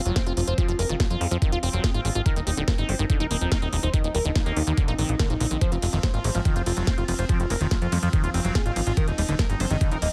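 A straight psychedelic trance pulse drives this short cut from a longer piece, built on a knocking, up-front electronic kick and a layered drum kit with a cracking snare, metallic hats and ride cymbal, while a punchy, funky analog bass plucks low beneath a squelchy, resonant acid bass riff that pumps against the kick through phaser and tape echo. Over them a gritty, screaming overdriven lead with a guitar-like edge and vibrato carries the melody, colored by chorus, phaser, cassette-tape saturation and echo, and a very quiet nasal wobble bass with a vowel-like formant sweep traces a second line until 8.8 s. A barely audible electronic impact opens the track, and a faint, morphing vintage wavetable pad with bright, detuned shimmer sustains chords throughout, all pressed into a dry, heavily compressed, radio-like sound with a driving, psychedelic mood.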